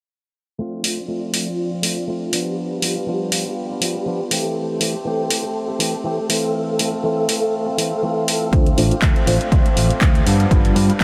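A twangy, clean electric guitar riff and lush, phased string-machine chords open this nostalgic, sensual stretch of filtered disco house at 121 BPM, pumping under a filter sweep over Dm7, G7, Am7 and Fmaj7 while tape-warm handclaps and hi-hats sit up front from 0.8 seconds. At 8.5 seconds a punchy electronic kick, a round fingered electric bass and a reedy electric piano with fast tremolo join in. A huge ambient reverb soaks the whole into a dreamy haze, and the piece is cut from a longer work.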